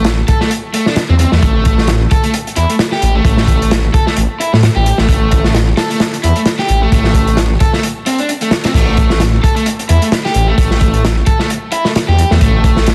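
A raw garage guitar riff, a detuned saw bass and a crunchy breakbeat drum kit open this gritty breakbeat excerpt together, driving at 131 BPM in 4/4 with a light 16th-note swing in A minor. The overdriven electric guitar is picked in the A3 to A4 range and trails a tape echo. Beneath it, the thick, menacing bass beats with its detuned sawtooth edge against a sine body, sustaining with a fast attack. The acoustic kit sounds like a small room, saturated and dark with a rolled-off top, pairing a punchy kick and medium-tuned snare with hi-hat and dark crash cymbal. A break arrives at 7.8 seconds, and at 8.8 seconds the music drops onto an A5 chord, pressing on until the cut at 12.9 seconds. Light studio reverb, vinyl crackle and a dense, heavily limited modern master keep the three up-front parts raw and close.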